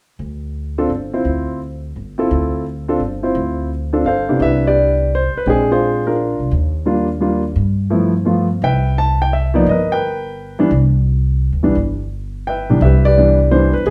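An intimate concert grand piano with audible action noise, deep bass and a short, vintage sustain carries the melody from 0.8 seconds over a woody, growly pizzicato upright bass that starts at 0.2 seconds, in this relaxed, swinging jazz trio excerpt at 171 BPM in 3/4 and C major, which moves from alternating G7sus4 and Dm9 chords into a Cmaj9, Bb13 and Ebmaj9 passage, heard from further back in a club room with wet reverb.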